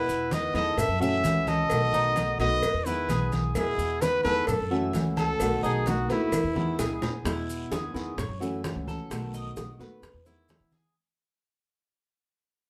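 Cuban son in a guajira vein, this sunny, relaxed excerpt moves at 130 BPM in a straight 4/4 in E major, cycling through Emaj7, F#m7 and B7. A warm, punchy trumpet with light vibrato sits up front as the close-miked solo voice, carrying the melody in a pop style until it drops out at 7.0 seconds. Beneath it, a full-bodied, fingerpicked nylon-string guitar supplies accompaniment, while a picked Cuban tres adds metallic arpeggios from its doubled strings, and a woody, thumpy pizzicato upright bass on gut strings holds down the low end. Ringing, low-tuned congas struck with hard hands lead the percussion, with tight, high-tuned cowbell and bongos, grainy maracas and a raspy guiro sitting in the background. A drum fill arrives at 6.3 seconds, and the band, heard playing live together in one room with a wet studio reverb, fades out from 7.3 seconds to the end.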